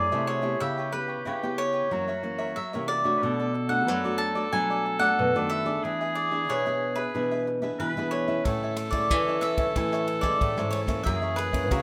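Playful and joyful, this samba and choro passage in F# minor at 92 BPM sets a crisp, up-front picked cavaquinho melody over a distant, roomy oboe second line, a second picked cavaquinho and a fingerpicked classical nylon-string guitar in accompaniment, and a bright, full-bodied nylon-string bass line with fresh strings and audible finger squeak, joined at 8.5 s by an airy, polished big-band drum kit with tight kick, ride cymbal and rim click, all heard in a small room with moderate reverb.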